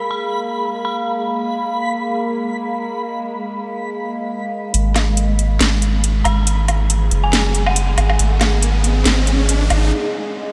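Heavy and brooding, this deep dubstep excerpt at 139 BPM in a half-time swing opens on a resonant sawtooth drone with moving overtones, chorus and phaser, holding G#m beneath a reversed, granular swelling texture and an eerie, inharmonic FM bell in the background, until at 4.7 s a round, soft dub sub bass and an up-front garage kit of cracking snare, metallic hats and woodblock arrive over F#sus2 as a filter sweep on the drone and an electronic riser from 6.4 s build toward a break at 9.9 s, all bathed in a dreamy, huge ambient reverb.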